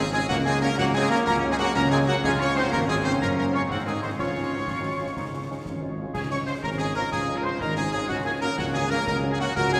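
Drenched in a long cathedral-like reverb, this rousing, proud excerpt of a military-style wind band march in a straight 6/8 rings out as if from a church or concert hall. A bright, tight trumpet section carries the melody over a mellow tuba bass set up front, while a clear woodwind section, a tongued, expressive piccolo and a euphonium with a smooth top weave second lines in the background, joined by sustained chords from a close-miked trombone section and a very quiet, distant, dark French horn accompaniment. Concert snare drum, clash cymbals and concert bass drum enter at 0.3 seconds, their cymbals dusky and set back in the mix, and the trombones drop out at 9.4 seconds as the rest play on.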